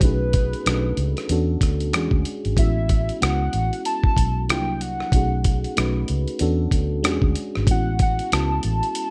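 Dark, dry production opens this soulful, sensual neo-soul R&B fragment at 94 BPM in A major with swung sixteenths, where a gritty, compressed sampler-style drum kit of hi-hat, thumpy kick and rim click sits up front beside a round, punchy foam-muted electric bass, while a glassy, bell-like FM electric piano with chorus moves through B9, E13 and A6 chords beneath a hollow, nasal square-wave lead that carries the melody with vibrato and a filter sweep.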